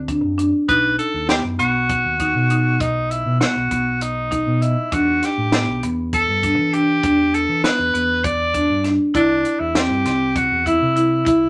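Progressive instrumental band music in 7/8 at 199 BPM counted in eighths, this short cut from a longer piece feels tense and driving in E minor, moving from D through B and Em7 to C. A clear tenor saxophone carries the jazz-style solo melody up front, its soft attack and vibrato sounding distant and roomy, while a marimba with medium hard mallets spins woody, percussive arpeggios on padauk bars in a boxy small-room tone. Beneath them a dark, round fingered electric bass holds the low end and a compact cocktail kit supplies dry hi-hat, tight kick and high-tuned snare, all within a moderate studio reverb.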